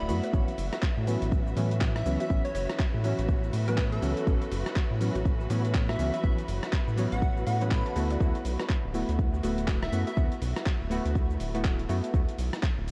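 A dreamy, reverb-soaked mix with a cassette-tape haze opens this relaxed, sunny deep house excerpt, moving at 122 BPM in 4/4 with a 60% swing on the sixteenths in A major. A punchy, layered electronic kick sits up front beside a round, dark analog bass whose sidechain pumping gives the low end its breathing motion, while a gritty, overdriven sampler-style kit adds cabasa, handclaps, hi-hat and rim click. Deep, mellow chord stabs, treated with chorus, tape and delay, carry the harmony from A69 at 0.3 seconds to D69 at 8.0 seconds. In the background, a catchy, bright unison lead with vibrato sings its melody through a diffuse ambient delay until 10.2 seconds, and a very quiet, warbling lo-fi pluck weaves arpeggios alongside it. A clear, focused studio string section adds a bowed ensemble texture that also pumps with the sidechain before dropping out at 12.1 seconds.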